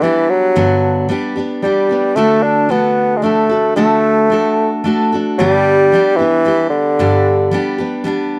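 A clear bassoon with light vibrato and a picked, full-bodied steel-string acoustic guitar open together, both up front, in an easygoing, down-home country waltz at 112 BPM in 3/4. The bassoon carries the melody in a classical style from D3 to D4 over chords moving from G to D and back to G. It stops at 7.7 seconds, and the guitar rings on alone until 8.4 seconds in this short cut from a longer piece, captured in a dry, close 1970s-style studio booth.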